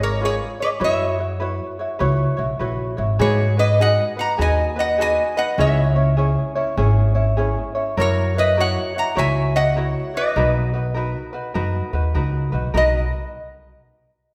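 Swung eighths in 4/4 carry this dreamy, languid Hawaiian snippet, cut from a longer piece, as a fingerpicked lap resonator guitar plays the bright, metallic, nasal slide melody up front over a light, fingerpicked ukulele and a woody, growly pizzicato upright bass with steel strings. The three play together from 0.0 to 13.1 seconds, moving through chords from C#7 and F#7sus4 to G#m7, C#m, F#7 and Bmaj7, with the guitar and bass sitting a touch louder than the ukulele. A wet recital hall reverb gives the acoustic trio the airy ring of a church or concert hall.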